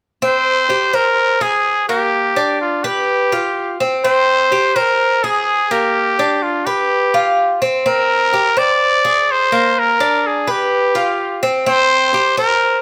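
Set in a large studio with a moderate reverb, this sultry Latin excerpt moves at 126 BPM in a straight 4/4, cycling through C5, Abmaj9, Bb9, Bb and G7 chords. An acoustic Cuban tres picks metallic, double-strung arpeggios from 0.2 seconds, while a bright, nasal trumpet with a straight mute carries the up-front jazz melody from 0.3 seconds. The trumpet's tone is raspy and growling, with light vibrato and a smooth top.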